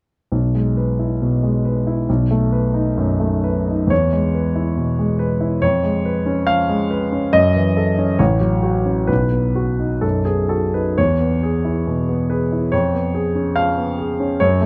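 Hopeful and warm, this romantic character piece for solo grand piano moves with a flexible rubato in 2/4, its polished, present tone sitting up front and close against a moderate recital-hall reverb. Cut from a longer piece, it opens over E/B and B7 before a new passage begins at 3.9 seconds, drifting through C#7/E#, F#m7 and B and returning to E at 11.0 seconds.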